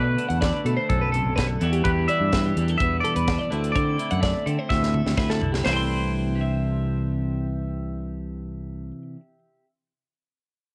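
Bright and playful, this math rock and midwest emo excerpt pairs a twangy electric guitar melody, bathed in spring and plate reverb, with two chiming twelve-string electric guitars, one picking chordal accompaniment through subtle chorus and the other tracing high arpeggios. A growly, overdriven fingered bass sits up front, while a crisp, airy fusion kit with a high-tuned snare and punchy kick plays a fill from 4.7 seconds and drops out at 5.8 seconds. The chords move from Bm7 through Em11 and D9 to C69, and the home cassette recording lends a lightly reverberant, lo-fi haze.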